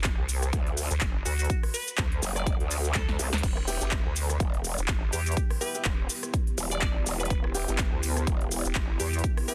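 This short cut from a longer bass house track has a dense, heavily limited modern sound set in a digital ambience, with gritty energy and a bouncy, swung groove. A punchy, layered electronic kick sits up front alongside a big-room dance kit of crisp hats, a punchy snare, handclaps, rim clicks, shaker and crash, the kit carrying a tape-warm character from being re-recorded in a large room. Two up-front basses drive the low end with sidechain pumping: a nasal, resonant vowel-sweep wobble bass shaped by a formant filter, and an aggressive, saturated growl bass that joins at 0.5 seconds. A glassy, crystalline wavetable pluck with ring modulation, a filter sweep, chorus and delay carries the melody from 1.3 seconds. After a drum fill at 2.9 seconds, the harmony shifts from D to Em as a deep, moody detuned analog pad enters in the background, and a brilliant grand piano adds stabs with delay from 3.7 seconds.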